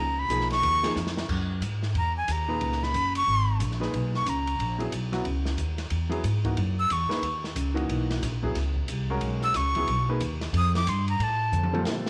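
Heard through light studio reverb, this searching, spiritual modal jazz excerpt in F# mixolydian swings at a brisk 182 BPM in 4/4. A breathy, bright flute solos up front throughout, its vibrato, reedy edge and crisp chiff riding over a woody pizzicato upright bass, while a clear, polished upright piano and a dark, boomy-kicked acoustic drum kit with dark cymbals and a rolled-off top join at 0.3 seconds. Short drum fills arrive at 1.0 and 11.5 seconds, and the harmony moves from Db9 to a lengthy F#9sus4 before settling on Fadd9.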